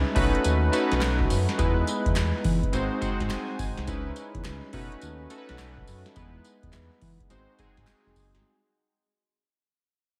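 Swung sixteenths drive this bouncy, confident new jack swing R&B passage, where a booming analog drum machine with deep kick, crisp snare and metallic hats sits up front beside chorused, detuned vintage keys that add a short fill at 2.7 seconds, a smooth sawtooth synth bass and a faint, dry group handclap, the mix bathed in dreamy hall reverb as it fades out over ninth and major-seventh chords.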